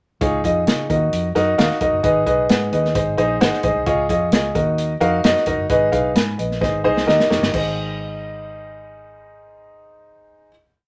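A woody upright piano sits up front, playing close-voiced chords in steady eighths with grace notes and short fills, its action noise audible in an intimate, natural sound. This short, complete piece is uptempo 1960s-style soul in a straight four, urgent and passionate in mood. Beneath it, a dark, round, foam-muted electric bass plays a melodic, syncopated soul line with a vintage amped tone. A natural-sounding acoustic drum kit with a tight kick and a medium-tuned snare drives a backbeat groove with hi-hat and crash, then plays a fill from 6.6 seconds. The drums stop at 7.6 seconds as piano and bass sustain a final chord until the close at 10.5 seconds, all set in light reverb.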